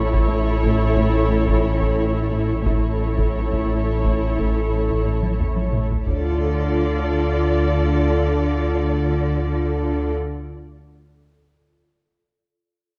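A straight 5/4 pulse at 90 BPM drives this eerie, tense suspense film-score passage in D harmonic minor, where con sordino violin sections carry a veiled melody and a distant second line over muted violas, a distant French horn section and a blurred, evolving granular cloud pad, while cellos play a riff until 5.9 s and a bass line beneath lush double basses and a deep, punchy sub bass drone, background taiko drums struck with hard sticks add a fill from 5.2 s, a very quiet metallic vibraphone rings from 1.0 to 6.1 s, and barely audible dry timpani return at 6.1 s as the harmony moves from A to Dm within a dark scoring-stage reverb.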